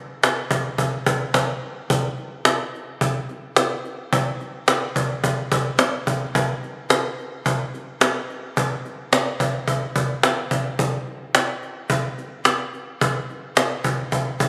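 A snappy cajon enters at 0.2 s and carries this dream pop excerpt alone at 108 BPM in a straight 4/4, its snares buzzing under hard hands and sitting up front with a compressed, saturated edge. The sound has the candid feel of a phone recording in the room, bathed in a wet plate reverb with a long 2.5 s tail that lends the blissful, floating mood. The part plays on until 14.5 s, where the cut from the longer piece ends.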